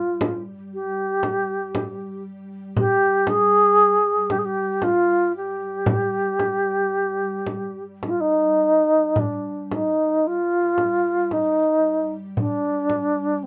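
Longing and mournful, this short cut from a longer Caucasian folk lament drifts in rubato 3/4 at roughly 52-59 BPM, tuned to A4 = 439 Hz. An alto flute carries the melody from start to finish, ranging from C4 to Ab4 with a pure, mellow tone, tongued notes, vibrato and an unsteady quality that sounds distant yet sits up front in the mix. Beneath it, an ethereal, airy pad holds a low G3 drone throughout, its detuned, sub-octave sawtooth body softened by ensemble chorus, slow attacks, long releases and its own reverb. A small, bright frame drum played with soft hands enters at 0.2 seconds and stops at 13.1 seconds, sounding close and acoustic in a small room. The piece moves into a new section at 9.2 seconds, and the whole has the light reverb and rough character of a home demo.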